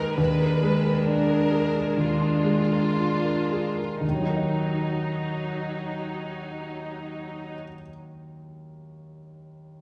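A passionate, brooding romantic excerpt opens with a clear, intimate grand piano carrying the melody up front, its action noise audible, over a rich, vibrato-laden chamber violin section singing an expressive second line and a smooth, distant viola section giving even accompaniment, the rubato slowing through the first 4.0 seconds as a Bb7 over Eb resolves to E-flat minor, before the strings drop away at 7.6 seconds and the piano closes alone in a scoring-stage reverb.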